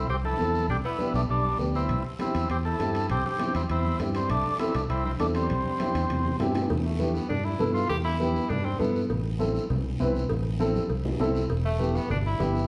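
A sunny, festive cumbia at 200 BPM opens with a buzzy, overdriven combo organ carrying the melody over a bright tenor saxophone line, a round, punchy fingered electric bass up front, congas, raspy guiro and a woody upright piano, with ringing timbales and cowbell joining at 1.9 s. During a drum fill the organ drops away, and the sax takes a solo from 6.7 s, all set back in a wet, large studio reverb in this short cut from a longer piece.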